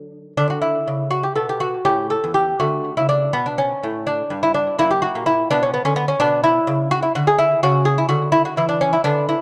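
Set in 6/8 with a rubato feel, this brief passage is a baroque-style classical dance cut from a longer piece. A solo lute carries it from the start to 9.4 seconds. It is fingerpicked on double gut strings, some of them octave-doubled, and ranges from E2 up to A4. Its delicate acoustic tone sits up front, touched by a tape echo, while light reverb and a dark, warm production surround it. The harmony moves from Bmadd9 through A, D and Gadd9 to F#, then passes through Bm and E5/B before closing on C#madd11. The mood is radiant and flowing, and the pliant timing gives the dance a songful grace.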